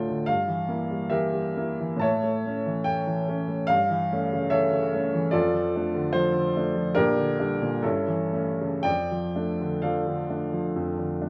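Bittersweet and brooding, this romantic character piece for solo upright piano drifts in D minor at a slow 56-75 BPM in 4/4, its rubato phrasing giving the time a free, breathing quality. The piano sits up front with a woody, vintage tone and long sustain in light reverb, ranging from Bb1 up to A5 and tuned slightly high at A4 = 444 Hz. Cut from a longer work, the 11.3-second passage moves through shadowed harmony from Edim/G and A7/G toward Gm/Bb before settling on Dm/F at 8.9 seconds.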